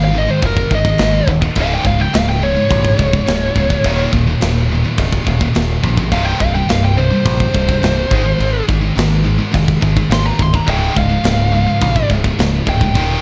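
A distorted, dark-toned lead guitar solo sings high over three bright, picked rhythm guitars, one scooped and double-tracked, and a growling overdriven bass in this dark, heavy metal excerpt at 105 BPM, with an acoustic metal drum kit of tight kick, medium-tuned snare and crash entering at 0.4 seconds up front in a dry, dark production as the chords move from Ab5 through Db5, Eb5 and C5.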